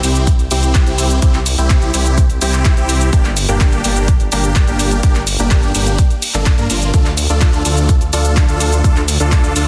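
A powerful, euphoric festival progressive house excerpt in a straight 4/4, where a huge, dense supersaw riff with sidechain pumping and delay rides over a thick, menacing detuned saw bass that also pumps, while a big-room dance kit of handclaps, hi-hat and shaker sits behind a punchy, up-front electronic kick that enters at 0.3 seconds, all moving through C, Gm and Dm under light reverb and a heavily limited modern master.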